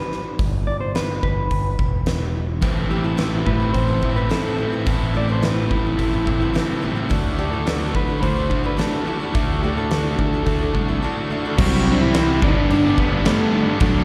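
Angsty and brooding, this quiet-loud alternative rock excerpt in a straight 4/4 sounds like a live gig heard through the venue's PA, with a recital hall reverb around it. A dark, slightly broken-up electric guitar carries the fingered melody, soaked in spring reverb, slapback echo and digital delay. An up-front arena drum kit with bright cymbals, a fat snare and a punchy kick drives alongside a growling, overdriven fingered bass. At 2.6 seconds, a thick fuzz guitar riff pushes to the front, while a boxy parlour steel-string acoustic picks arpeggios in the background, finger squeaks audible. After a short break at 11.0 seconds, the acoustic drops out at 11.6 seconds as a double-tracked, compressed distorted guitar and a warm overdriven guitar join the riff, both very quiet in the mix.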